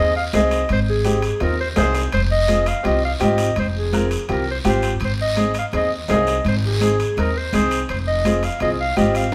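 Cumbia in F minor at 167 BPM, this fiery, danceable snippet of a longer piece moves in a straight 4/4, its harmony swinging between Ab and F minor. A warm, smooth-topped clarinet carries the melody in a classical solo style, ranging from Ab4 up to F5. Beneath it, a bright, brilliant upright piano with a polished, long-sustaining tone supplies the accompaniment, while a woody, dark upright bass on gut strings sits up front with a thumpy pizzicato sound. From 0.3 seconds the percussion joins: high-tuned, damped congas played with soft hands and a ringing metal-shelled timbales sit in the background, and a raspy guiro adds grit. The band sounds like it is playing live together in one room, wrapped in a wet studio reverb.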